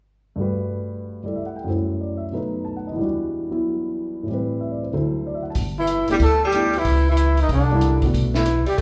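A breathy, close-miked trumpet carries the melody in jazz style, its mellow tone marked by vibrato and scooped notes, while an edgy, forceful tenor saxophone plays a punchy second line beneath it from 5.8 seconds. This sophisticated small-group swing and bop piece opens with a dark grand piano alone, intimate and up front, its natural sound carrying audible action noise as it moves through rich extended chords. At 5.6 seconds an upright bass enters, woody and pizzicato on steel strings, alongside a compact cocktail drum kit of hi-hat, punchy kick and high-tuned snare, smooth and rolled-off at the top. The swung eighth notes give the music an easy lilt. The band plays live in one room, with a large studio reverb adding a wet bloom and a faint mains hum in the background. The piano stops at 8.5 seconds, and the excerpt is cut from a longer piece.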